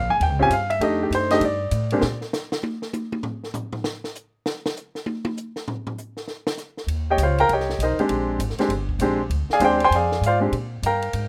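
Playful and swinging, this short cut from a longer small-group jazz piece moves at a brisk clip with a bop-leaning feel. A baby grand piano with a warm, short-sustain tone comps up front alongside a woody, thumpy upright bass on gut strings, the two sounding together over the opening chords before dropping out at 2.2 seconds. A compact cocktail drum kit, playing from 0.2 seconds, then carries a drum solo from 2.0 seconds, its dry, natural sound marked by dark cymbals, a high-tuned snare, a tight kick and toms, with hi-hat and ride as well. The bass returns at 6.9 seconds and the piano just after on an Eb13 to Bb13 move, bringing the group back together before the cut ends. Light reverb and a rough home-demo mix give it a casual, intimate character.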